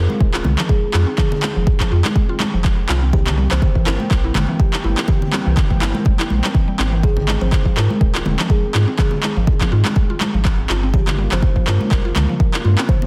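Afro house with a warm, earthy mood, this short passage is cut from a longer track and moves with a gently swung groove. A deep, overdriven electronic kick sits up front, joined by layered, overdriven handclaps, both carrying the sound of a large room, while bright, high-tuned congas played with hard hands sit in the background. Beneath them a round sine sub bass holds the low end with sidechain pumping, alongside a dark, detuned sawtooth pad with chorus that sustains the chords and pumps in the same way. A woody FM pluck with a mallet-like character plays short, percussive arpeggios, and a soft, hollow-toned kalimba adds a mellow, ringing melody. The chords move from Fm7 through C7 and Abmaj7 to Gm7b5, and the dense, heavily limited master keeps the small-room sound full and close.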